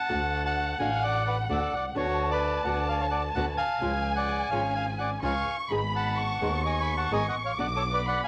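A reedy, vintage-sounding bandoneon opens this tense, melancholic tango fragment at 0.0 seconds, carrying the melody up front with a band-limited edge and plate reverb, while a dark violin section traces a second line above it with vibrato and a smooth, expressive top. Almost at once, a fingerpicked acoustic flamenco guitar adds a warm accompaniment, and a solo bowed double bass sits close, its boxy, intense tone carrying an airy bow and vibrato. A focused, very quiet string section contributes bowed stabs beneath, set low in the balance. The pulse is 128 BPM in 4/4, though the feel is rubato, and the harmony moves from D through Bm/D, C#, and G#m before reaching Bm. The whole cut has the softened character of a home cassette recording in a small, moderately reverberant room, with the guitar falling away at 7.7 seconds as the phrase ends at 8.3 seconds.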